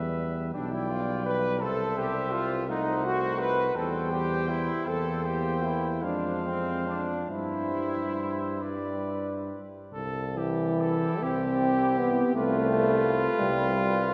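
A tender, hymn-like classical passage for brass band opens with the full ensemble sounding together from the first moment, cut from a longer piece. It moves in a slow, rubato 6/8 at roughly 44-58 BPM in C major. A mellow cornet with a smooth top carries the melody, joined by a clear flugelhorn on a second line. Beneath them a bright, tight trombone section adds present, vibrato-tinged accompaniment, while a distant, roomy euphonium sits in the background and a warm tuba with light vibrato anchors the bass up front. The harmony opens on Em and passes through a Cdim7 and a darker Fm before settling on C at 9.9 seconds and closing over G7/C by 12.4 seconds. A long, wet cathedral reverb surrounds the band, and the sound is soft-edged, its highs rolled off.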